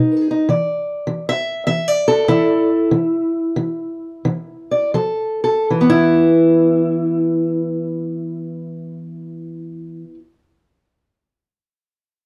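Mournful and smoky, this short acoustic country blues fragment cut from a longer piece features a lone fingerpicked steel-string parlour guitar, dark and woody with the boxy tone of old strings, sitting up front in a close, detailed recording with light reverb, swinging in 4/4 at around 78-102 BPM as it slows from 0.5 to 5.7 seconds, halting between 0.5 and 4.9 seconds over an E7sus4 chord before moving through F at 4.9 seconds to E5 at 5.7 seconds.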